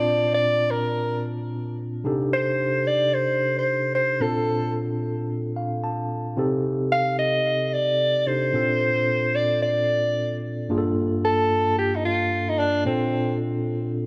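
Swinging sixteenths at 111 BPM give this slick, bouncy R&B excerpt its lilt, as a mellow, punchy soprano saxophone with light vibrato carries a forceful, roomy jazz-style solo melody over a clean tine electric piano heard through its built-in speakers, which adds a fill from 5.3 to 6.4 seconds while the chords move between Bbmaj7 and Cm69 before turning to Gm9 at 10.7 seconds and Bbmaj9 at 12.9 seconds, all set in a moderate echo chamber reverb.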